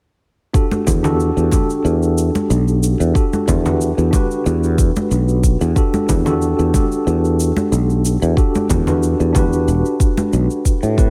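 Sunset chillout in E minor at 92 BPM, wistful and smooth, resting on a single Em11 chord as a mellow, clean tine electric piano with tape echo sits up front beside a deep, layered electronic kick drum and a bright, growly, punchy sustaining fretless electric bass that enters at 0.9 seconds, while a produced cabasa and ringing, close, dry congas fill out the groove in light digital ambience.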